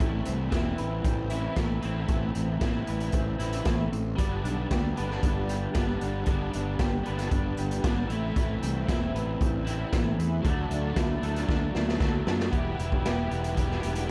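Jangly and carefree, this indie rock excerpt moves at 115 BPM in a straight 4/4, cycling through Amadd9, G and Dadd9 before landing on Em as a new section opens at 12.5 seconds. A bright, crunchy overdriven guitar plays a picked riff coloured by analog chorus, while a second electric guitar through a small old amp adds its own riff from the background, slightly broken-up and lo-fi, with a harmonic tremolo. Underneath, a fingered electric bass growls with fuzz and overdrive, direct and amped. The raw garage drum kit sits up front with a punchy kick, medium-tuned snare and hi-hat, sounding saturated and gritty with a rolled-off top and a pumping small-room character. A drum fill from 11.5 to 12.5 seconds leads into the change, and the whole mix carries a dark production with light reverb and small room ambience.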